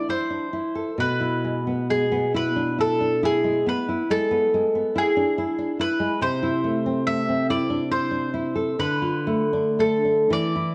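The mandolin carries the melody up front, its picked double strings giving a round, warm voice that sits between G#4 and E5 in this yearning, melancholic romantic duo. Beneath it, a full-bodied nylon-string guitar fingerpicks a deep classical accompaniment from B2 to A4, with finger squeak audible, and both instruments play together for the whole 10.7 seconds of this short cut from a longer piece. The pulse is slow and rubato in 12/8, hovering around 37-49 BPM in dotted quarters, and the harmony in A minor moves from Am to E7/B, then to Am/C at 6.2 seconds and Dm at 8.8 seconds. A moderate recital hall reverb surrounds the pair, while a worn cassette-tape character adds a warbly pitch drift that lends the sound an old quality.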